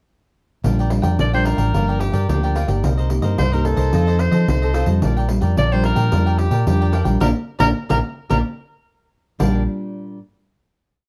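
At 0.6 seconds a festive, playful samba and choro in Bb major opens at 110 BPM, with crisp cavaquinho strumming in sixteenths, fingerpicked nylon-string guitar pairing thumb bass with syncopated plucked chords, a round, punchy, foam-muted electric bass playing a samba figure up front, and a jingly pandeiro played with soft hands; at 1.2 seconds a clear, distant soprano saxophone with vibrato and plate reverb enters with a jazz-style melody built on song-like motifs, and the band hits an accent from 7.2 seconds before settling on a closing chord in a dark production.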